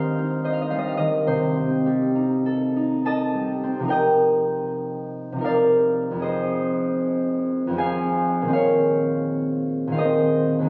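Captured on a phone in the room, this brief cut from a longer piece sits in a wet concert hall reverb with a long tail, with compression applied. A solo concert harp, thumb-plucked, ringing and up front, plays a wistful, gentle classical piece in 3/4 with a flexible rubato, moving through rich seventh and extended chords from Abmaj7 and Cm6. At 3.9 seconds it shifts into a second passage that drifts through Cm11, Fm7 and Bbm11.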